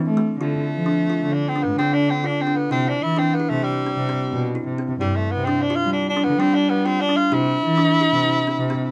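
Hypnotic and urgent, this short chamber-style contemporary instrumental moves at 130 BPM in an uneven 5/4 with a straight feel, set in D dorian and tuned slightly low at A4 = 435 Hz. A woody kalimba opens at 0.0 seconds with ringing arpeggios, its hollow-box tone and thumbnail pluck giving a vintage, band-limited character. A muted cello enters at 0.1 seconds as the bass, bowed con sordino by a single player, dark and veiled with light vibrato, sitting up front. From 0.4 seconds a bright tenor saxophone carries the melody in a forceful, punchy pop-style solo with vibrato, up front yet with a distant, roomy quality. The harmony moves from Dm through Cmaj7 and G7sus4 to C, and the close, detailed recording with little reverb keeps the texture intimate, the passage cut from a longer piece.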